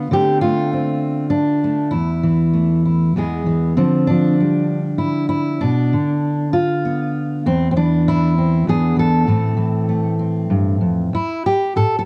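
The recording has the character of a home cassette tape, with a moderate studio reverb lending a gentle sense of space. A single fingerpicked steel-string acoustic guitar fills this short folk fragment, cut from a longer piece, sitting up front with a dark, full-bodied dreadnought tone. Moving in a loose, rubato triple metre, the playing spans from low bass strings up into the middle register, giving the music a reflective, wistful mood. The harmony drifts through minor and suspended colours, passing from Dm7 through a diminished chord and an E7 before settling on Am around 9.3 seconds. It closes on an unresolved Esus4 at 11.1 seconds, leaving the phrase hanging.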